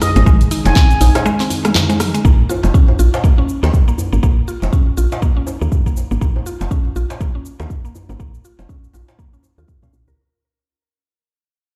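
A swung, hypnotic and driving 121 BPM afro house groove in Bb minor rides a deep, up-front electronic kick, a dark-hatted deep house kit of handclaps, hi-hat, rim click, shaker and toms, and a hard-handed, band-limited djembe, beneath a woody, round FM bass with sidechain pumping and a bright mallet-like synth pluck whose chorused, tape-echoed arpeggios take on a filter sweep from 2.2 seconds as the piece fades out, while a mellow, resonant sawtooth lead with vibrato and cassette tape colour sings only until 1.0 seconds over a smooth, detuned analog pad that holds its chords until 2.2 seconds, the mix sitting in a large studio reverb.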